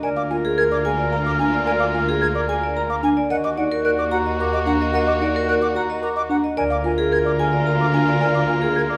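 A bright, ringing vibraphone struck with hard mallets carries the melody in this meditative yet urgent stretch of minimalist classical pattern music, moving at 110 BPM in 3/4 over chords that shift from Bb/D to Ebm and back. Around it, a buzzing, woody marimba on soft mallets and a crisp, pure concert flute spin arpeggios, while a distant oboe with light vibrato adds a second line. A smooth, close violin section holds sustained chords and an expressive bowed double bass section anchors the bass, the ensemble set in a moderate scoring-stage reverb in a passage cut from a longer piece.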